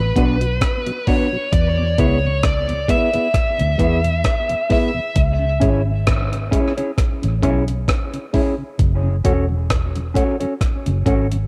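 A slow, swung 66 BPM groove in 4/4 anchors this hypnotic, spacious dub reggae excerpt, carried by a gritty, compressed sampler-style breakbeat kit whose thumpy kick, hi-hat and rim click sit up front under a cassette-tape grain. Beside it, a foam-muted, round and punchy fingered electric bass holds the low end, amped and prominent. A clean, fingered electric guitar with tape echo and a mellow tonewheel organ with vibrato, the organ set back in the mix, supply the accompaniment. A dark, high-gain picked lead guitar, distorted and carrying tape echo and cassette saturation, states a short melody up front before dropping out at 5.2 seconds. The chords move from Bm to E, then C#m and F#m, and the whole home cassette recording is set in light digital reverb.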